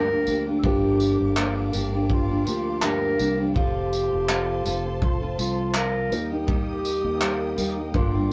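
A soft-attack clarinet carries the melody in a classical style, sounding distant and roomy as it moves between F4 and Bb4 across this short 8.3-second clip from a longer acoustic pop piece. The mood is reflective and tender, set in G minor at 82 BPM in 4/4 with a light sixteenth-note swing, and the harmony moves from Gm7 to F at 3.6 seconds and then to Eb at 6.1 seconds. Up front, a dark, fingerpicked dreadnought steel-string guitar shares the accompaniment with a very quiet felt-muted upright piano, whose thick felt, mellow intimacy and audible action noise sit far beneath it. A round, direct-amped fretless electric bass anchors the low end, while a studio string section plays bowed, sustained chords in the background with vibrato, portamento and a smooth top. An airy, polished country drum kit with a punchy kick, handclaps and tambourine enters at 0.3 seconds. The whole take has the rough feel of a rehearsal room, with a moderate, short booth ambience.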